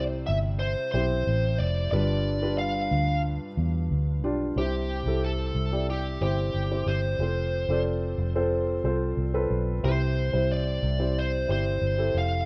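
A rough home-demo sound with light reverb frames this short, anthemic and uplifting piano-driven pop fragment in C major at 91 BPM, cut from a longer piece. A soft, boxy felt-muted upright piano carries the accompaniment up front, while a round, punchy vintage muted electric bass anchors the low end. A dark, overdriven lead guitar picks out the melody above them across the full 12.5 seconds, over a progression that moves from C to G7 and then through C, F and back to C.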